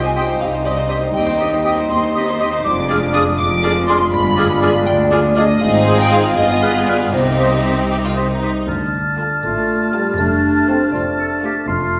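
In a straight 6/8 at 80 BPM counted in dotted quarters, this playful, whimsical and sneaky cinematic cue, cut from a longer piece, sets a bright violin section and a background marimba on the melody, with a clear second violin section, an airy flute section, a distant oboe and a clear background clarinet carrying second lines, a mellow bassoon and a rich viola section in accompaniment, dark French horns holding sustained chords, and lush cellos and double basses underneath, heard in a wet recital-hall reverb as the magical harmony moves from C minor to D minor at 8.7 s.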